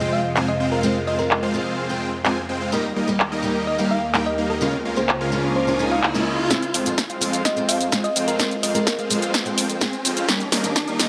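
A huge ambient reverb wraps this euphoric, powerful festival progressive house excerpt in F minor at 127 BPM, in straight 4/4. A round, tine-like synth pluck in the manner of a thumb piano carries the melody with a gentle, mellow tone coloured by chorus, cassette tape and tape echo. Beneath it a picked steel-string acoustic guitar sits in the background, pumping against the beat alongside a lush supersaw pad with a slow attack and a phaser, while huge, bright supersaw chords play an up-front riff through a low-pass filter and tape echo. The big-room dance kit comes in at 0.4 seconds with a punchy snare, handclaps, hi-hat and shaker, all filtered and forward in the mix, and a riser begins at 4.5 seconds. From 6.5 seconds the music shifts into a build-up with a drum fill, as a layered electronic kick and a thick, detuned saw bass enter in the background, while the chords move from Fm to Eb.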